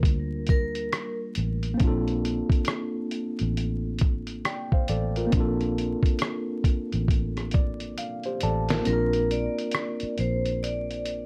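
A swung 68 BPM groove from a muffled, pitched-down sampler-style drum kit, with thumpy kick, fat snare, rim click, hi-hat and 12-bit grit, anchors this cosy, mellow lo-fi hip hop cut in Bb major. Up front alongside it from the very start sit a round, foam-muted electric bass and a worn, slightly out-of-tune tine electric piano moving from a rootless Ebmaj9#11 to Bbmaj7. A bright vibraphone played with hard mallets rings briefly near the start through analog delay, and after electric piano and drum fills the kick drops out at 8.9 s as the vibraphone returns over a plain Bb chord, all set in light reverb and vinyl crackle.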